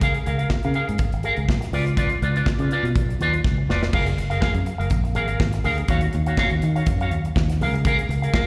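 Guitar, bass and drums start together in this driving, sultry disco excerpt, which is cut from a longer piece. The clean, picked electric guitar runs through an envelope filter with vibrato and slapback echo, giving a dark, quacking accompaniment up front. The fingered electric bass is round and punchy, with a foam-muted, direct-and-amped tone that sits close in the mix. The acoustic drum kit sounds smooth and shadowy, with a medium-tuned snare, a firm punchy kick, hi-hat and crash cymbal, and a drum fill from 3.4 to 3.9 seconds leads into a new section. The harmony moves through lush chords such as Gbmaj9 and Ebm9 before returning to Db6, and the whole performance sounds like a live gig heard through the venue's PA, wrapped in recital hall reverb.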